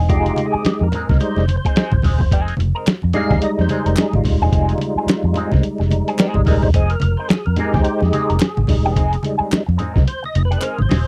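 A lightly overdriven tonewheel organ takes the lead up front, its percussive, key-clicking stabs colored by chorus vibrato and a slow rotary speaker over a driving, sly funk groove in F minor at 108 BPM with a swung 16th feel, all resting on an Fm7 chord. A muffled, compressed sampler-style drum kit with a thumpy kick and tape-warm tone anchors it alongside a dark, round, foam-muted fingered bass, while a bright, twangy electric guitar runs through an envelope filter, wah and phaser, and low-tuned congas sit in the background. Hollow group handclaps join at 2.9 seconds, and a drum fill arrives at 10.1 seconds in this dry, close 1970s-style studio sound cut from a longer piece.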